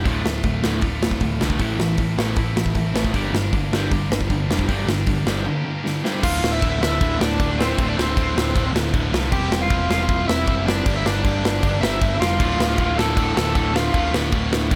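A dry, up-front punk rock excerpt in D minor at 156 BPM, aggressive and raw, built on a wall of riffing guitars: a crunchy overdriven guitar, a bright distorted electric guitar that drops out between 6.2 and 12.4 seconds, and a double-tracked high-gain guitar, all sitting in the background under a growly, punchy overdriven bass and a big acoustic kit with bright cymbals, a punchy kick and a medium-tuned snare. After a brief break and drum fill closing the first section, a smooth overdriven lead guitar with tape echo enters at 6.2 seconds to carry the melody over the shifting chords.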